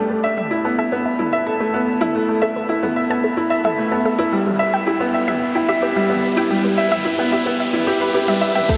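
A woody, slightly detuned upright piano riff sits up front in this melancholic, cinematic piano-and-strings electronica excerpt at 110 BPM, moving from Asus2 to Em through a build-up in which a lush, warbling sawtooth unison pluck plays arpeggios in the background under a filter sweep and sidechain pumping, an electronic riser enters at 1.7 s, a deep house kit of metallic hats and toms stays distant with overdrive, and a punchy electronic kick with the same grit lands only at 8.7 s, the dreamy mix soaked in huge ambient reverb.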